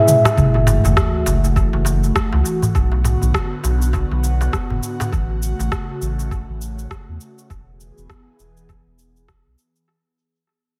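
An airy, breathy pad opens this organic downtempo excerpt in F# minor, joined almost at once by a short drum fill from a layered deep house kit of cabasa, rim click and toms, treated with analog delay. At 101 BPM in 4/4 with a swung sixteenth-note feel, the mood is earthy and warm. A crisp, close and dry metal-shell darbuka adds acoustic percussion until 5.1 seconds. At 0.4 seconds an impact lands as a background sub drop falls away, while a gritty, thumpy, tape-colored electronic kick and a round, dark analog bass step in up front, the bass carrying a sidechain pump. The detuned pad, softened by chorus and phaser and also pumping, sustains chords moving through F#m7, Bm, A6 and E, and the whole passage gradually fades out. A moderate echo chamber reverb gives the mix an echo-heavy sense of space.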